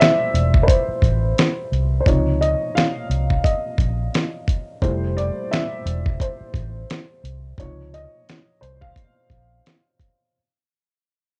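Swung sixteenths in 4/4 give this nostalgic, cosy lo-fi hip hop clip, cut from a longer piece, a loping lilt, carried by a gritty, compressed sampler-style drum kit with a thumpy kick, fat snare and hi-hat, and by a round, foam-muted electric bass with tube saturation that enters at 0.3 seconds. Up front throughout, a dark, woody, slightly detuned upright piano takes the solo with short-sustained chords, a rootless Fmaj9 alternating with Dbmaj9. Cassette tape colours the piano and drums, the home recording sits in light reverb with a dusty, dulled top end, and the whole clip fades out over its 10.3 seconds.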